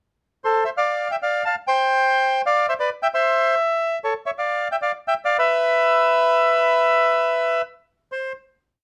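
Rubato and loosely pulled around a nominal 133 BPM in 4/4, this brief, complete tango piece unfolds in A minor, tuned to A4 = 444 Hz, with a dramatic, melancholic mood. A solo bandoneon carries the whole thing from 0.4 to 8.3 seconds, its reedy, smooth tone placed up front and moving between A4 and A5. The melody is built from motifs shaped into balanced period phrases, partly doubled in thirds, giving the single instrument a fuller, singing quality. After a short pickup bar, the harmony travels through Am, F69, Csus24, C, A/E and Dmadd9 before a lone final note rings out unaccompanied by chords. The production is dark and warm, set in a moderate studio ambience with a short, natural tail that keeps the sound intimate and close.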